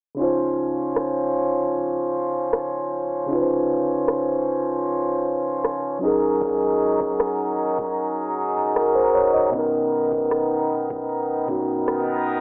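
A straight 4/4 trap kit of knocking kick, crisp hats and rim clicks enters at 1.0 s beneath a mellow, clean tine electric piano and a reedy, nasal, close-miked harmonium with sidechain pumping, giving this smooth, dreamy contemporary R&B fragment, cut from a longer piece, a gritty cassette-and-telephone tint, light reverb and a filter sweep across its Dbmaj7, Gb69 and Cbmaj7 chords.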